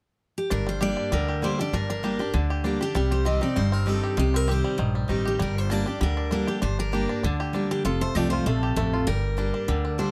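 A bright, picked steel-string guitar opens the melody at 0.4 s, joined a moment later by a twangy, fingerpicked banjo that shares the tune, giving this fast, swung bluegrass passage a haunting, lonesome air. Underneath, a second full-bodied dreadnought guitar sits up front with the accompaniment, while a woody, thumpy upright bass on gut strings plucks a prominent low line through a G minor chord progression. The close, detailed recording adds only light reverb, and the passage runs to 10.1 s as a slice of a longer piece.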